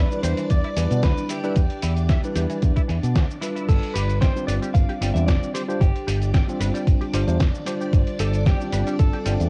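This nu-disco excerpt feels groovy and feel-good, riding a lightly swung 4/4 pulse over a move from Em7 to G7sus4 at 3.7 seconds. An overdriven, knocking electronic kick sits up front from 0.5 seconds, layered with a gritty, sampler-style soul kit that brings a fat snare, hi-hat, crash cymbal and cabasa in a large-room re-recording. A fingered electric bass with an envelope filter carries the low end, bright and upfront with transformer saturation. A tine electric piano plays accompaniment through its built-in speakers with sidechain pumping, while a lush sawtooth string machine holds soft-attack chords in the background, treated with phaser and ensemble chorus. Two clean, picked electric guitars recorded direct fill out the mids and highs: a twangy lead melody with harmonic tremolo and tape echo, and a chorused riff that stops at 9.3 seconds. Light reverb and a cassette home-recording character give the whole a dusty, lo-fi sheen.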